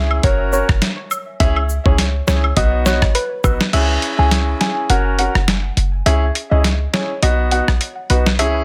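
A dense, heavily limited modern mix bathed in light digital reverb carries this hypnotic, bouncy dancehall excerpt at 103 BPM in C# dorian with swung 16ths. Up front, a gritty, overdriven sampler-style drum kit with a thumpy kick sits beside a punchy, tight 808-style bass, while a polished grand piano plays the chords. A soft, round pluck melody with chorus and tape echo floats on top, close acoustic woodblock and cabasa add texture until 3.6 s, and the kick drops out from 3.7 s.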